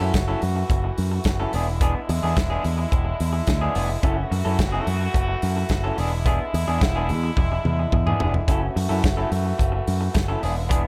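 A sultry, danceable disco groove in F# minor at 108 BPM opens with a picked electric bass pushed up front, its envelope filter giving it a bright, punchy bite, alongside a slightly broken-up, lo-fi electric guitar playing accompaniment through a small old amp. A muted French horn section holds sustained chords that sound nasal and metallic from a distance, while an acoustic studio drum kit with a punchy kick and medium-tuned snare drives the straight 4/4 beat, playing a drum fill from 7.4 to 8.5 seconds. The harmony moves between F#m7 and E7 in a small room ambience, and the piece is cut from a longer work.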